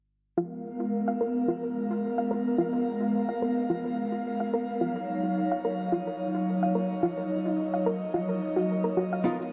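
Sunset chillout at 108 BPM in 4/4, with a light swing on the sixteenths, this brief excerpt is cut from a longer piece and sits in G# dorian with a smooth, wistful mood. An airy, breathy pad holds sustained chords from 0.4 s, its detuned sawtooth and triangle tones, noise layer and slow attack softened by chorus and shimmer reverb, while a filter sweep moves through it across the passage. Alongside it, a soft, round pluck plays arpeggios, gentle and dark with a sub octave, fast attack and short decay, trailed by dub echo and shimmer. The harmony moves from G#m69 to D#m9 at 4.8 s. Only at 9.2 s does a clean, hollow-body electric jazz guitar appear up front with a dark, compressed, fingered tone, joined briefly by a layered electronic shaker, all set in an echo-heavy digital chamber with lossy artefacts.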